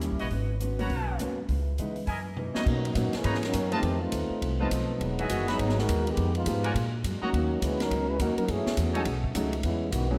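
Big band swing jazz at a brisk 206 BPM in 4/4, this sultry, brassy passage in B major is cut from a longer piece. An upright bass with a woody, thumpy pizzicato tone anchors the ensemble, while a warm baby grand piano with short sustain and a picked steel-string acoustic guitar, sitting in the background with audible finger squeak, fill in the accompaniment. A swinging big-band drum kit with a high-tuned snare, punchy kick, ride, hi-hat, crash, rim click and toms sounds airy and polished, and a drum fill at 2.4 seconds sets up the trombone section's solo from 2.7 seconds to the end. The trombones, tight and up front with light vibrato, carry that second line, while a clear trumpet section with a soft attack and a vintage character punctuates with stabs from 0.2 to 9.0 seconds. Rich extended harmonies such as G#m11, Bmaj9, F7#11 and B13 move beneath the horns, and a moderate scoring-stage reverb gives the band a spacious, polished sound.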